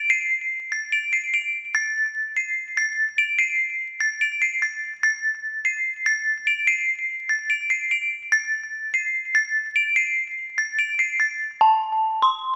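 A dark, detuned synth bell carries this menacing, cold hip hop fragment on its own from 0.0 to 12.6 seconds, its eerie, inharmonic FM tone striking with a fast attack and decaying high in the register, spanning A5 to D7. Chorus, phaser, a low-pass filter and delay color the up-front bell, which sits in light reverb over a bed of vinyl crackle. The tempo is 146 BPM in 4/4 with a half-time feel, and the passage is cut from a longer piece.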